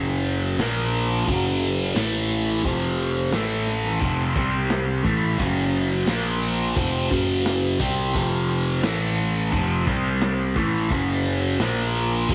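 Lightly reverberant small-room ambience frames this mysterious, dark psychedelic rock excerpt at 87 BPM in 4/4, where a bright, double-tracked fuzz guitar riff, up front with distortion and phaser, cycles through Gb5, Bb5, A5, F5 and C5 power chords over a round, punchy, overdriven picked bass, while a crunchy breakbeat drum kit with a punchy kick, medium-tuned snare, hi-hat and a rolled-off top enters at 0.3 s.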